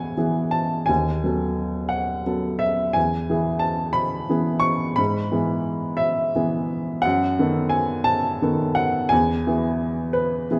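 Intimate and woody, with audible action noise and a short sustain set up front in a wet recital hall reverb, this serene, tender romantic nocturne for solo upright piano unfolds in E major at 58 BPM in a rubato 12/8, its brief 10.6-second span cut from a longer piece and moving through E, B7/D#, E/G# and B7/F# before settling back on E.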